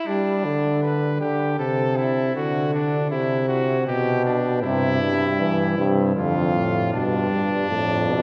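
Classical imitative brass canzona in a lively, stately 3/4 at 79 BPM, cut from a longer piece, where a bright trumpet carries the second line over a warm trombone accompaniment with vibrato, joined at 4.6 s by a warm euphonium bass with light vibrato, all heard from further back in a wet church reverb as the harmony moves from G through D and C/G before settling on G.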